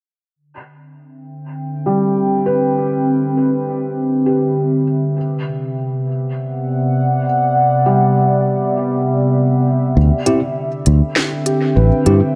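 A warbling, nostalgic tape-like pad with chorus and phaser holds sustained chords from 1.4 s in this peaceful, spacious ambient dub excerpt, joined by soft, intimate felt-muted upright piano arpeggios under a filter sweep and dub echo, before a punchy fingered electric bass arrives at 10.0 s and worn, slightly out-of-tune tine electric piano stabs with 12-bit grit and an electronic kit of woody snare and smooth hats enter at 10.3 s, all set in a moderate echo-chamber reverb.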